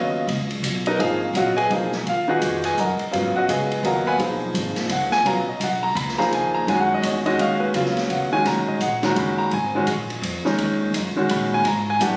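Captured on a phone in the room with moderate studio reverb and compression, this short modal jazz excerpt in a swinging 3/4 feels hypnotic and searching, resting on a single G#m9 chord throughout. An up-front concert grand piano carries the accompaniment with a clear, polished tone, deep bass, long sustain and audible action noise, while a woody, thumpy pizzicato upright bass sits beneath it. From 0.3 seconds, a distant, roomy big-band drum kit with a boomy kick, medium-tuned snare, hi-hat, ride cymbal and a rolled-off top swings quietly in the background.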